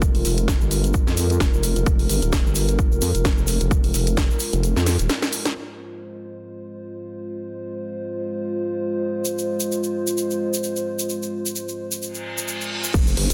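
A gritty, swaggering bass house passage opens with a nasal, resonant vowel-sweep wobble bass, saturated and up front, riding a punchy overdriven electronic kick and a house kit with a cracking snare, hi-hat and crash. Alongside them a deep, moody, detuned analog pad sustains F minor with soft chorus, while a grainy, close egg shaker ticks along with a swung feel. The kick drops out and a drum fill follows as the beat and bass fall away by 5.5 seconds, leaving the pad to brood until the shaker returns at 9.2 seconds; a reverse cymbal then rises into an impact at 12.9 seconds, where the bass, kick and kit briefly crash back in before this fragment of a longer track cuts off.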